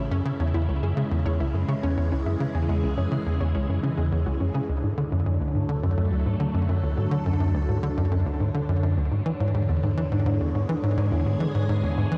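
A tight, punchy sequencer bass drives this luminous, cosmic stretch of ambient space music from the front of the mix, its sawtooth riff carrying chorus and delay. Swirling vintage string-machine chords with a phaser and a lush, detuned unison pluck arpeggiating with delay in the background sit beneath it, moving from C#m to Dadd9 at 4.7 seconds and on to E7. From 4.7 seconds a fat, very quiet analog bass and a bubbling, resonant stepped-filter texture with chorus and built-in reverb join, all within a dark production with light reverb.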